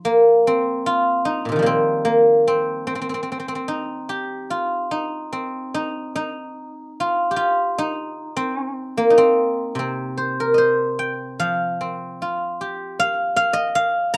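A solo guzheng opens this short cut from a longer Chinese traditional piece, its bright, silvery fingerpicked strings ringing up front across a span from Bb2 to Bb5. The mood is elegant and contemplative, moving at a loose 74 BPM in 2/4 with rubato and uneven beats, set in the C yu mode. The dry, open-air sound carries little reverb, and a new section begins at 11.4 seconds before the cut ends at 14.2 seconds.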